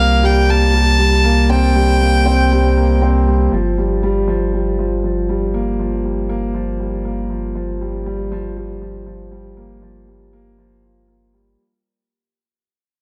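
Moving and hypnotic, this piano and strings electronica fragment, cut from a longer piece, sits at 119 BPM in a straight 4/4 and opens on a drop. A dark, mellow concert grand plays a riff in its middle register, its boxy tone and long sustain trailing into delay. Underneath, a round, sine-like sub bass with a fast attack holds the low end, sustained and up front. A clear, earthy violin, one bowed player with light vibrato, carries a high melody through delay before stopping at 3.0 seconds. The harmony moves from a C7 chord voiced with its third omitted to Gm7 at 3.5 seconds, where the fade-out begins as the piano and bass continue to the end. Light reverb and a studio ambience frame the dark, warm production.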